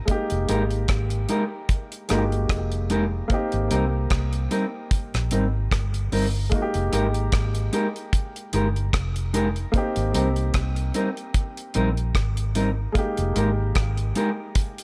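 A baby grand piano opens this tender, sweet lovers rock reggae excerpt with short-sustained chords touched by tape echo. A deep, dry drum kit of hi-hat, tight kick and rim click joins, and a round, punchy, foam-muted fingered bass comes in at 0.3 s, while a clean, mellow electric guitar adds stabs from 0.5 s, all moving to a gentle sixteenth-note swing. The harmony alternates between Fm11 and Abmaj9 in a small room with light reverb, with the bass, guitar and drums sitting up front.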